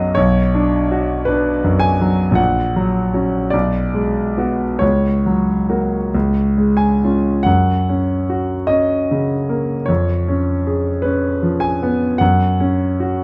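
Romantic classical nocturne for solo piano in F# major, dreamy and tender, drifting in a rubato 4/4 at about 44-55 BPM as a clear, smooth concert grand with a deep bass and a vintage character sits up front through close, detailed microphones, spanning A#1 to G#5 over moving harmonies that open on Bm and come to rest on F#5 at 12.2 seconds, all carried in a moderate stone-room reverb in this short passage taken from a longer piece.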